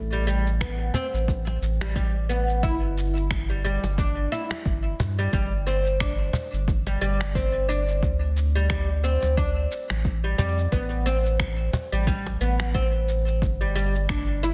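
Hypnotic and earthy, this organic downtempo groove in A minor moves at 89 BPM with a swung sixteenth-note feel, anchored by a deep, round sine sub bass given tube saturation and a woody, plectrum-plucked fretless oud playing up-front arpeggios through digital delay. A punchy, layered electronic kick re-recorded in a small room sits alongside gritty, overdriven sampler-style shaker and finger snaps, while a snappy, close and dry cajon joins at 0.9 seconds and drops out at 12.7 seconds. The short cut from a longer piece drifts through suspended harmonies such as A7sus2 and Gsus4, along with an open D5, under light reverb and a dense, heavily limited modern master.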